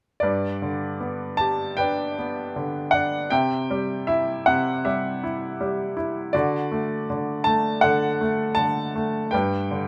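This classical, lyrical solo piano passage, cut from a longer piece, moves calmly in G major at 79 BPM in 4/4 with a flexible, rubato feel, its harmony passing from G through C and D before returning to G at 9.3 seconds. A single upright piano plays from 0.2 to 9.9 seconds across a range from G2 to A5, its woody, intimate tone captured up front with the noise of the action audible. The close, detailed miking and nearly dry room give the sound a polished, present clarity.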